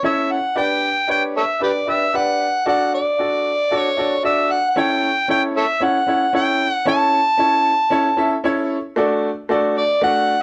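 An overdriven, amplified harmonica leads this joyful, danceable soul excerpt, its gritty voice sitting up front as a jazz-style solo full of tongue slaps and scooped notes. Beneath it, a baby grand piano plays accompaniment with a clear, intimate and natural sound, its long sustain and audible action noise also placed close to the listener. The harmony moves from A to G to D and back to A, then settles on D as a new passage begins at 9.0 seconds. Both instruments play from the very start until just past 10 seconds, when the cut from a longer piece ends. A moderate club reverb places the pair in a small room, while lossy compression artefacts leave a degraded edge on the recording.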